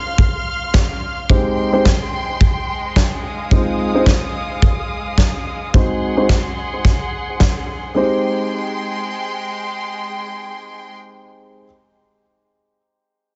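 A distant, lush violin section opens this sunny, groovy nu-disco piece at 108 BPM in Ab major, with a light 16th-note swing and sustained, sidechain-pumped and low-pass-filtered chords. It is joined by an up-front, punchy acoustic kick at 0.2 seconds and a medium-tuned snare. A dark, mellow grand piano with a short sustain, delay, pumping and a filter sweep carries the accompaniment through Dbmaj7, Abmaj7, Fm7 and Ab7 in a small room, and the drums drop out at 7.5 seconds.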